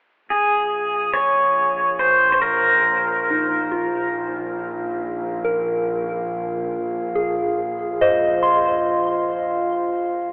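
Ambient excerpt in 3/4, spacious and melancholic, where a twangy, up-front pedal steel guitar played with fingerpicks and slide carries the melody through diffuse delay until 4.1 seconds, while a glassy, ethereal glass harmonica fades in as a dark texture, a soft FM synth bell with chorus enters at 3.3 seconds with gentle arpeggios, and a distant, lush bowed double bass section holds a low Bb1 beneath, the whole wrapped in a telephone-like tone and vast cathedral reverb.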